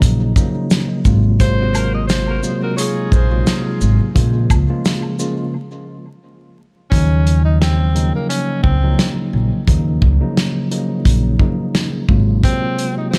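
A moody, reflective boom-bap hip-hop groove at 87 BPM in Eb dorian opens with a clean tine electric piano colored by cassette tape and analog delay, a woody, dark pizzicato upright bass, and an up-front soul drum kit with a fat snare, tight kick, hi-hat and shaker, while dry maracas, woodblock and handclaps sit in the background until 5.4 seconds. A clear, close-miked tenor saxophone enters at 1.4 seconds with vibrato and scooped notes, briefly joined by a warm saxophone section playing soft-attack stabs, and a break at 5.5 seconds leads into the second section. The swung, echo-heavy mix carries vinyl crackle and light small-room ambience, and the passage is cut from a longer piece.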